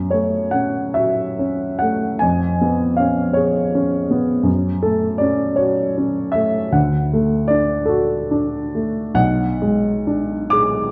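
Wistful and mournful, this brief fragment of a romantic classical nocturne unfolds in a rubato 6/8, with a solo baby grand piano carrying the whole excerpt from 0.0 to 10.9 seconds across a span from B1 to D6. The piano sounds warm and natural, placed up front with a short sustain, while a wet recital-hall reverb surrounds it. A worn cassette-tape character adds warbling pitch drift as the harmony moves from F#m through C#7/E# and D to a closing G#m7b5/B.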